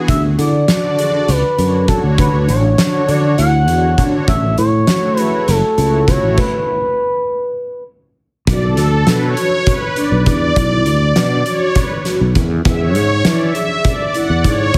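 Driving and brooding, this progressive instrumental in 7/8 is cut from a longer piece and has a heavily compressed, radio-like sound with light reverb. An up-front, gritty, oversized low-tuned drum kit with a fat snare and punchy kick pumps in a big room beneath a growly, bright fretless electric bass, while a mellow vibraphone with soft mallets rings in the background and a detuned sawtooth analog pad with a slow attack sustains through chorus. An expressive, dark synth lead with vibrato carries the melody, a stop arrives at 6.4 s, the lead ends at 7.8 s, and the pad takes a solo from 8.5 s.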